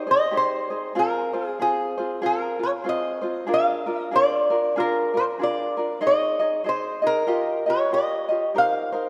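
A metallic, nasal lap resonator guitar carries the melody with slide and fingerpicks, sharing the front of the mix with a bright, light tenor ukulele that is fingerpicked as accompaniment throughout the 9.1 seconds. This languid, sunny Hawaiian piece moves at 95 BPM in 4/4 with a swung feel in Ab major, drifting through chords such as Abmaj7, Fm and Bb7. A lush hall reverb bathes the rough home-demo mix, and the clip is cut from a longer piece.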